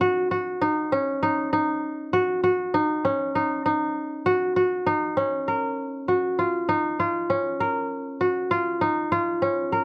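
Straight eighths at 198 BPM are grouped in an uneven 7/8 metre, giving this contemporary instrumental a restless, forward-leaning pulse. A lone acoustic kora carries the whole fragment from 0.0 to 9.8 s, fingerpicked up front with a crisp, ringing tone in the middle register. The piece sits in Eb minor, tuned slightly flat to A4 = 435 Hz, and moves from an Ebm7 colour to an open Ebsus2 at 5.5 s, where a second section begins. The mood is pensive yet urgent, as if a thought is being chased rather than settled. A modest small-room ambience and the soft grain of cassette tape frame the strings, and the clip is cut from a longer piece.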